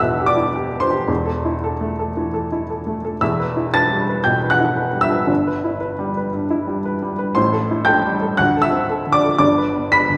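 A woody, intimate upright piano, its action noise audible and its notes short in sustain, plays a passionate, bittersweet romantic character piece in E minor at 115 BPM with free rubato, spanning E1 to B6 and drifting through Am7 and D7 to settle on G by 9.4 seconds, all heard from further back in a recital hall whose wet reverb softens this brief passage cut from a longer work.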